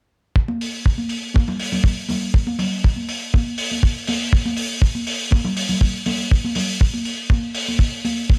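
Nu-disco at 121 BPM in a straight 4/4 with a cosmic, groovy mood, this brief cut from a longer piece sets a tight, dark, up-front acoustic kick drum with studio ambience, running from 0.4 to 8.4 seconds, against a dry, smooth hi-hat with a rolled-off top from 0.6 to 8.1 seconds and vintage, band-limited congas from 0.5 to 8.1 seconds, all captured in a small room with a gritty hardware character.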